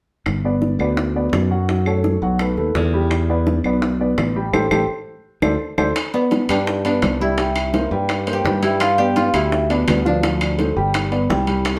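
Afro-Cuban jazz at 168 BPM in G mixolydian, danceable and sophisticated, where a bright, growly fingered electric bass and a woody upright piano sit up front over round, low-tuned bongos and small-room claves, the band hitting an accent with a drum fill just before 6 seconds, when ringing metal-shell timbales, a dry fingerpicked koto as a second line and a mellow soft-mallet vibraphone carrying the melody join in, the players sharing one live room bathed in wet studio reverb.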